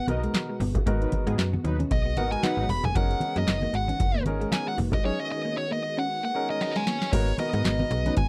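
Early-eighties boogie funk at 115 BPM in 4/4, with a 56% swing on the 16ths and a funky, danceable mood, set in G# minor over G#m9 and F#69 chords. A nasal, overdriven lead guitar with a parked wah sits up front and plays a solo from the start until 7.1 seconds, with a drum fill arriving at 6.6 seconds. Beneath it, a booming analog drum machine with a deep kick, crisp snare, metallic hats, handclaps and crash cymbal drives the groove alongside a snappy, slap-like FM bass with a fast, decaying attack. A polished grand piano plays accompaniment, a twangy, slightly broken-up electric guitar plays a compressed riff in the background, and low-tuned congas with a thick skin add damped hand percussion. A silky string machine holds sustained chords with ensemble chorus, while a fat, detuned analog synth brass with filter sweep and vibrato plays a second line that largely drops out after 2.6 seconds. 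The sound is a dry, close 1970s-style studio recording with little reverb, cut from a longer piece.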